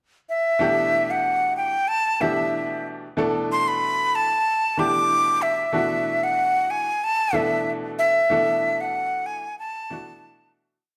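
Drenched in a large studio reverb, this short, funky and driving jazz piece puts a breathy, reedy flute up front, its slapback echo trailing a motif-based melody of period phrases with crisp chiff and vibrato from 0.3 seconds. A brilliant, somewhat worn grand piano joins at 0.6 seconds with short, pushed quartal chords moving from A9sus4 to Bm7 beneath it, before the whole recording fades out from 8.3 seconds.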